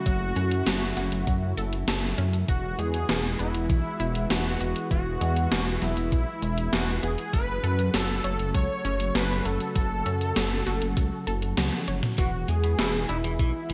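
This excerpt has a bright, 1980s-style digital sheen with light reverb, a driving, nocturnal slice of synthwave in F# minor at 99 BPM, moving between F#m and Eadd9. A thick, bold detuned sawtooth lead carries the melody with vibrato through lush chorus and digital delay, while a full-bodied, warbling pad holds sustained chords in the background, its slow attack pumping against the kick. A punchy, bright filter pluck spins arpeggios through digital delay, and a dark, rumbling detuned saw bass sits up front, also pumping with the sidechain. The drums pair a thumpy, tape-tinged electronic kick with an up-front drum machine of hi-hat, toms and a gated-reverb snare, with a fill from 11.6 to 12.2 seconds. At 12.2 seconds, as the chord returns to Eadd9, a clean, twangy picked electric guitar slips in quietly with a short riff carrying subtle chorus and delay.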